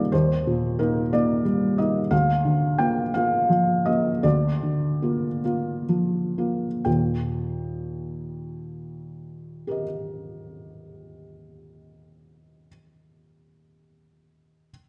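A felt-muted upright piano plays alone, soft, mellow and close-up with a short sustain, in an intimate, tender neoclassical minimalist excerpt in a rubato 6/8 that slows from 1.1 to 6.9 seconds before a second section begins, all set in the wet reverb of a recital hall.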